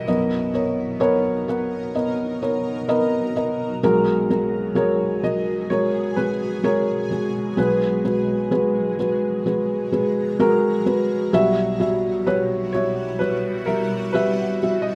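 A rough home-demo mix bathed in wet studio reverb frames this hopeful, tender pop excerpt at 64 BPM, where an up-front felt-muted upright piano carries soft, dark, intimate accompaniment with audible action noise beneath a clear, worn concert grand piano melody and a shimmering, ethereal ambient pad with chorus and phaser, all moving through Bmaj7, F#add9/B and Emadd9/B.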